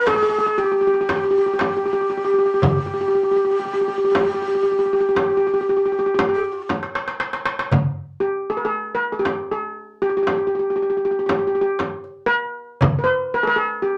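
A small, reverberant room surrounds this excerpt of an Arabic maqam ensemble, with each part placed up front, giving the music a stately yet festive air in a 10/8 metre. A metallic, shimmering steel pan carries the melody, struck with medium rubber sticks and sitting mid-forward. Beneath it, a breathy low ney of end-blown reed cane plays a second line, close-miked, with vibrato, tongued notes and an unsteady quality, until it drops out at 6.7 seconds. A crisp, high darbuka with a small metal shell and a warm frame drum played with soft hands form the percussion. After a drum fill, a new section begins, and the pan leads over the drums until they stop at 13.1 seconds.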